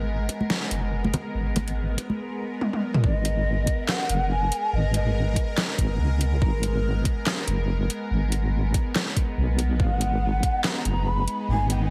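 A deep, dark wobble bass with a saturated, chorused sawtooth edge sits up front in this brooding, meditative deep dubstep excerpt at 142 BPM in G# minor, with a swung, half-time feel. A tense, string-like drone with phaser and vibrato sustains a G#madd9 chord, while soft-handed, damped congas appear briefly. A knocking electronic kick plays alongside a layered kit of metallic hats, deep snare, handclaps and toms, and a drum fill closes the build-up at 3.0 seconds. At the drop a breathy, distant shakuhachi enters with dub echo, and the mix carries a heavily compressed radio sound with vinyl crackle and faint mains hum.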